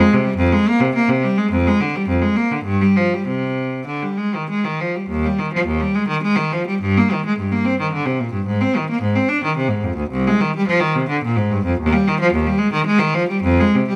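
Close, detailed microphones set a single cello up front in a stone room whose moderate reverb gives each phrase a lingering tail. This grave yet flowing baroque-style suite movement in triple metre breathes with a free, rubato pulse, the bowed cello playing alone from its deep low register into the tenor. The tone is rich and intense, coloured by vibrato and a smooth top, in a 14-second excerpt cut from a longer piece.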